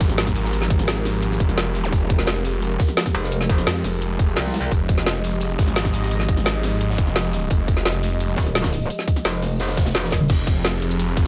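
A snarling, distorted sawtooth bass growls up front throughout this tense, mechanical slice of dark technical drum and bass, its detuned unison layers sounding aggressive and bright. A metallic, FM-built wobble bass joins it in bursts at 3.1 and 8.4 seconds, distorted and tube-saturated with a chorused shimmer. Beneath them, a tight electronic kick leads a layered, produced drum kit with a woody snare, metallic hats, shaker, toms and crash cymbals. Underneath sits a very quiet, gritty acoustic breakbeat kit with a rolled-off top. A sweeping, resonant pad holds evolving, chorused chords that pump against the sidechain, while a brief electronic zap flickers in the background. The passage plays mostly as a drop with dry, close sound, and a drum fill arrives at 10.1 seconds in this excerpt, clearly cut from a longer piece.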